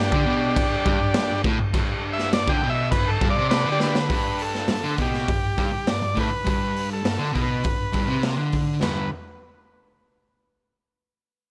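A straight 4/4 garage rock groove, rowdy and raw and cut from a longer piece, sets a buzzy vintage combo organ with light vibrato, soloing on the melody through 4.1 seconds, over a double-tracked, picked fuzz guitar riff and a gritty acoustic drum kit with a boomy kick and dark cymbals in a small, pumping room, the drums adding a fill at 3.8 seconds, with all three parts up front under light reverb.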